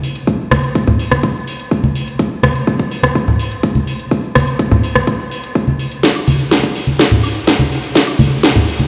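An up-front, tape-warm drum kit of metallic hats, a cracking snare, rim click and tambourine, its hats pumping with sidechain, opens this driving, dreamy house build-up, cut from a longer piece, joined by a punchy, high-passed electronic kick from 0.3 seconds. Close, dry congas and woodblock played with soft hands enter at 0.5 seconds, also pulsing with sidechain pumping, and the kit rolls into a drum fill at 6.0 seconds. A huge ambient reverb, like a big sound system in a bare stone room, casts a long, cavernous haze over the whole mix.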